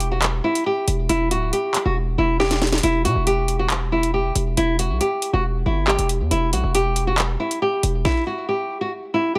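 Drill hip hop in E minor at 138 BPM with a half-time feel, this cold, tense excerpt is cut from a longer piece and set in light reverb. A small, bright fingerpicked nylon-string guitar carries the melody through a low-pass filter, playing until 9.4 seconds, while a heavy, aggressive distorted 808-style bass with a noise layer and fast attack sits up front until 8.0 seconds. An electronic drill kit with a knocking kick, sharp snare, metallic hats and handclaps plays a fill from 2.4 seconds before the harmony settles on Em at 2.8 seconds.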